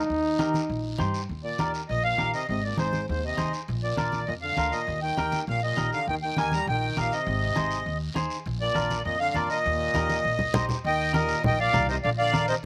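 Cumbia at a brisk 201 BPM in Eb major, sunny and festive, opening with a bright, punchy trombone solo for its first 1.3 seconds, its scooped notes carrying a light vibrato before it settles into a second line. A reedy, sweet accordion with light tremolo tuning takes the up-front melody from 1.4 seconds, over woody pizzicato upright bass, a twangy, clean picked electric guitar, low-tuned, thick-skinned congas played with soft hands, and a raspy guiro. The chords cycle through Eb, Ab and Bb in a dry, close outdoor sound, ending on Bb at 12.0 seconds.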